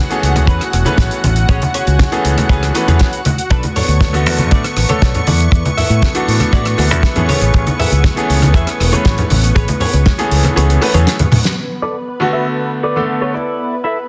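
Nu-disco at 119 BPM in A major, this groovy, feel-good excerpt pairs a bright, brilliant grand piano, with audible action noise, sidechain pumping and slapback echo, with a lush, detuned sawtooth unison pad, while a clean, compressed, direct-recorded electric guitar plays a picked riff through chorus and echo. Underneath, a warm, direct fingered electric bass holds the low end, and a dry, damped 70s kit with a fat snare, rolled-off top and small-room ambience is joined by low-tuned, thick-skinned congas in the background and a tight, up-front kick. Over the opening section the chords move from Amaj9 through Bm7 to E7sus4 and back to Amaj9. The kick drops out at 10.6 seconds ahead of a drum fill and band accent, and from 11.6 seconds filter sweeps color the guitar and pad as the harmony passes from Bm7 to E7sus4.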